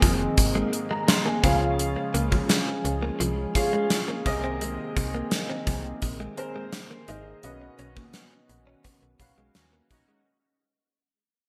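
A steady, straight 4/4 pulse at 85 BPM from a punchy, up-front gated drum kit drives this romantic, uplifting 1980s-style pop clip, with a snappy, metallic FM bass beneath a clear baby grand piano with long sustain and a brassy analog pad drifting through Abadd9, Db and Abadd9/C before turning to Badd9 at 7.4 s, where the band accents together through a fade-out. A bright, compressed clean electric guitar picks a riff through lush chorus and digital delay, and fat, very quiet analog synth brass stabs slip in at 9.6 s. The polished digital production sits in a lush hall reverb with a 1.8 s decay.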